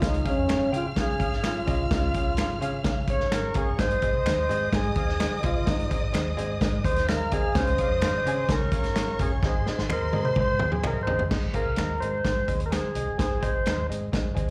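A clean, up-front tonewheel organ with slow rotary speaker and tube saturation leads this danceable, joyful 1960s-style soul cut at 128 BPM in Ab major, soloing until 11.3 seconds over lush, bowed dark strings, a woody, slightly detuned upright piano, a round foam-muted electric bass, a punchy soul drum kit with a fill from 9.4 seconds, and close, dry finger snaps, with slapback echo on most parts and the whole track carrying the club reverb and vinyl crackle of a live gig heard through a venue's PA.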